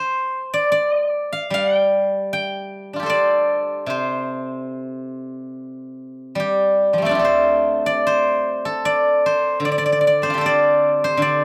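Pastoral and elegant, this brief passage of Chinese traditional music is cut from a longer piece for solo plucked strings. A single steel-string zither carries the whole 11.4 seconds on its own, moving in a free, rubato 4/4 that lets phrases breathe. Its acoustic tone is bright and silvery, plucked with fingerpicks so that notes ring out across a range from the low register up into the high treble. The instrument sits up front in the sound, close and clear to the listener. A moderate studio reverb gives the ringing strings a gentle halo of space, adding to the graceful, open character of the music.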